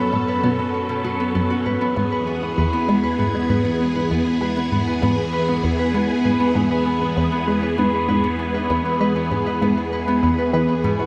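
A huge, wet reverb with a long seven-second tail surrounds this short excerpt of ambient, sequencer-driven space music, giving it a mysterious, expansive atmosphere. A swirling, vintage string machine sits up front with bright sawtooth chords that fade in slowly and sustain, colored by ensemble chorus and phaser. Beside it, an acoustic Celtic harp rings out in fingerpicked arpeggios, its tone warm and up front, with tape echo trailing each note. From 0.1 seconds, a resonant blip pluck plays a low riff, juicy and squelchy with a detuned sawtooth edge, a fast attack, short decay and moving notch, mellow in tone and colored by phaser, analog chorus and tape echo. The harmony moves from F#m to E at 1.7 seconds, and all three parts carry through to the end.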